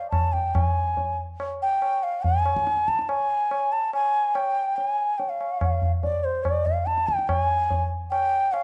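A straight 4/4 pulse at 143 BPM anchors this meditative, radiant Hindustani classical fragment, with the low-tuned tabla entering at 0.1 s, its short ring sounding close and acoustic in a small-room space. The bamboo bansuri carries the melody between C5 and A5 from the opening, its airy tone marked by vibrato, a crisp attack and lifted highs, and both instruments sit up front. Set in a moderate recital-hall reverb with a dark production and tuned to A4 = 441 Hz, the music shifts to a new section at 7.3 s before the cut at 8.6 s.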